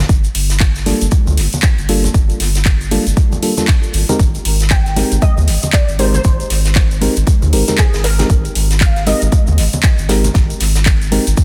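A round, deep analog bass opens this moody deep house excerpt at 117 BPM with swung sixteenths, pumping under a punchy, up-front electronic kick, a house kit's handclaps and metallic hats, a muffled indie kit's hats and snare, and a grainy tube shaker, before a mellow FM electric piano with chorus and tape echo sets dark stabs over Gm9 and Abmaj9 alongside background congas from 0.9 s, and a soft, gentle pluck with 12-bit sampler grit and a filter sweep carries the melody from 4.7 s in a small, dense room.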